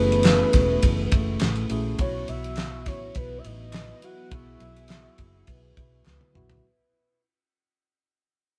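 A hazy, mellow indie and bedroom pop fragment sounds like a band playing in one room, with moderate reverb and a fade-out running throughout. A soft, round synth lead layered with a sub octave and treated with chorus and phaser carries the melody over a clean tine electric piano, a very quiet, shimmering string machine of violins, and a bright, twangy guitar through a small old amp with a vibrato effect, set in the background. Underneath sit a dark, foam-muted fingered bass, a dry, up-front 70s drum kit with a fat snare and tight kick, and distant group handclaps, with the drums playing a fill at 6.1 seconds.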